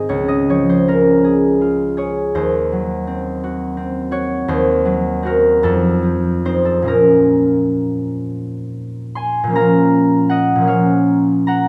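Classical solo harp in a slow, rubato 6/8, drifting between 41 and 58 BPM with a serene, dreamy mood, in this short excerpt from a longer piece. The concert harp sits up front, fingerpicked and ringing across a span from Db2 to C6, its tone warm and acoustic as it moves from Db through Cdim/Eb and F7 to settle in Bb minor from 4.5 s. A lush recital hall reverb and dark production give the notes a lingering bloom, with a new passage beginning at 9.6 s.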